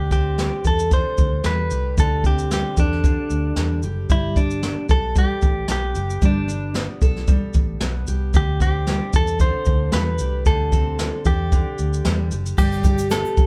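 A light 16th-note swing drives this easy-going, sunny acoustic pop excerpt at 113 BPM in 4/4, set in G major and moving between D7sus4 and Gadd9. A jazz brush drum kit sits up front, its boomy kick, medium-tuned snare, shaker and dark crash cymbals sounding roomy and distant with a rolled-off top, coming in at 0.1 seconds. Beneath it, a vintage muted fingered electric bass gives round, punchy, foam-muted low notes through an amp, while a jumbo steel-string acoustic guitar supplies full-bodied picked accompaniment. The melody comes from a clean electric guitar recorded direct and compressed, picked with a warm tone in a middle register. Near the close, at 12.6 seconds, a grainy, bright egg shaker slips in quietly in the background, and the whole band plays together in one room with light reverb.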